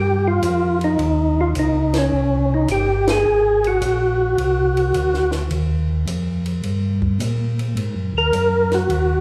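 Bluesy and greasy, this short soul jazz organ trio excerpt swings at 106 BPM in 4/4, with a gritty, overdriven tonewheel organ carrying the melody through chorus vibrato and a stopped rotary speaker, a mellow, round organ bass turning on a slow rotary speaker, a dry cocktail drum kit with dark cymbals and a high-tuned snare entering at 0.4 seconds, a band accent at 3.0 seconds over chords moving from Eb13 to Ab9, Ebadd9 and Ab7sus2, all set in a reverberant church-like hall with lossy compression artefacts.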